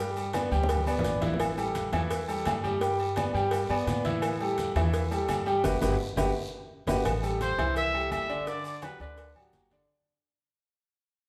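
Salsa at a brisk 170 BPM in G major, this sunny, joyful clip from a longer piece moves in a straight four-beat feel. A bright, brilliant concert grand piano sits up front with deep bass and a polished presence, comping over G, A5 and Gmaj7 changes, while a woody, thumpy pizzicato upright bass on gut strings lays down a dark low end. The percussion bed blends ringing metal-shell agogo bells and timbales, low-tuned congas played with soft hands, a tight high-pitched cowbell, a raspy guiro and grainy, mellow maracas, with the latter parts tucked into the background and a drum fill arriving around 0.5 seconds. A band accent lands at 5.6 seconds before the harmony shifts to Am7, and a clear, punchy trumpet with light vibrato and a vintage pop character steps forward for a short solo phrase at 7.4 seconds. The band sounds as if playing live together in one room, bathed in a lush large-studio reverb as the clip fades out.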